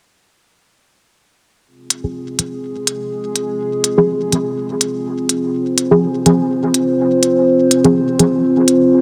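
Deep and meditative, this short dub techno passage cut from a longer piece moves at 124 BPM in 4/4 with a light 16th-note swing, settling on F minor throughout. A dark analog pad enters at 1.7 seconds, holding sustained chords built from detuned square and sawtooth tones with a sub octave and a wave-folded edge, its slow attack and long release softened by subtle chorus. Smooth, layered electronic hi-hats arrive just after, sitting up front with the close character of a small room. From 2.0 seconds a deep, mellow chord stab adds nasal, soft plucks with a fast attack and decay, treated with chorus, phaser, cassette tape colouring and dub echo while a filter sweep moves across it. A lush hall reverb bathes the sound, giving the moody layers a spacious, hypnotic depth.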